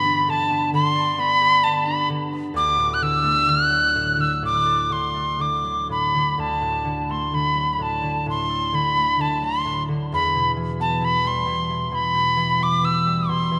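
A metal tin whistle sits up front with an airy, expressive tone, its soft attack carrying a touch of chiff, vibrato and lifted highs as it sings the melody of this nostalgic, pastoral Celtic slow air. Beneath it, a concert harp supplies a warm, ringing fingerpicked accompaniment through chords of G, D and later Em. The rubato phrasing unfolds across two statements of the same strain, bathed in a deep church reverb, in this excerpt from a longer piece.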